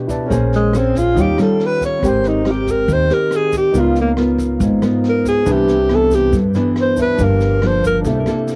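Sunny and romantic, this short bossa nova excerpt at 139 BPM features a breathy, whispered alto saxophone solo with vibrato and scooped notes up front from 0.6 seconds, over a full-bodied fingerpicked nylon-string guitar, a polished grand piano in the background, a woody pizzicato upright bass, a small-room brush drum kit with a boomy kick and rim clicks, and a grainy tube shaker, set in light reverb on a home cassette recording.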